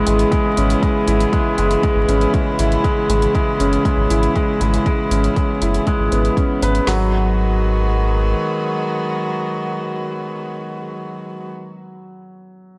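Intimate and hypnotic, this excerpt of piano and strings electronica moves at 119 BPM in a straight 4/4, set in G# minor and tuned slightly sharp of standard pitch. A felt-muted upright piano carries the riff throughout, its mellow, up-front tone touched with audible action noise and trailed by delay. Beneath it, a dark string quartet holds sustained chords with light vibrato and an airy sul tasto bow, one player per line, pulsing gently under sidechain pumping. A round sine sub bass, deep and up front, pumps in the same way until 8.3 seconds, while a deep house kit with a deep kick, woody snare and dark hats, layered with an extra electronic hi-hat, drives the groove until about 7.0 seconds. The harmony shifts from C#m7 to G#m7 at 6.9 seconds, and the strings and piano continue on after the beat drops away, all bathed in a lush hall reverb.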